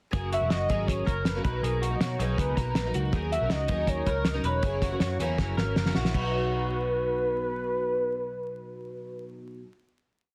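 Vinyl crackle and small-room ambience frame a dense, heavily limited master in this short, youthful and nostalgic jangly indie pop piece in B major at 160 BPM, where a shimmering, octave-doubled twelve-string acoustic guitar with ensemble chorus fingerpicks barre chord shapes, a bright, slightly broken-up electric guitar through a small old amp rings out twangy arpeggios, a round, foam-muted electric bass carries a melodic line, a cloth-damped, thuddy drum kit with a fat snare and dark cymbals drives a brisk backbeat up front until a fill at 5.4 seconds, and a velvety synth lead with chorus, vibrato and slapback echo carries motif-based phrases over Bmaj7, D#m7 and F#7 before the music comes to rest on a final B chord at 6.1 seconds.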